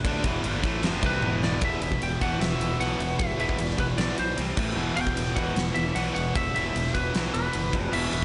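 Hard rock at 152 BPM in E minor, this aggressive, driving excerpt is cut from a longer piece and runs just over eight seconds. Three electric guitars play the riff throughout: a bright, overdriven one with slapback echo and a double-tracked distorted one, also with slapback, sit in the background, while a third, warmer overdriven guitar stays very quiet beneath them. A growly, fuzz-laden fingered bass adds punch underneath, and a huge arena drum kit sits up front with a fat snare, punchy kick and bright crash and ride cymbals, playing a drum fill from 1.2 to 1.6 seconds. A very quiet tonewheel organ holds sustained chords with key click and a slow rotary speaker. From 1.1 seconds, a twangy, slightly broken-up lead guitar carries the melody, compressed and touched with slapback echo. The harmony shifts from E minor to power chords on E, C, A and F, and the whole mix has a big arena sound in a recital-hall reverb with a dark top end.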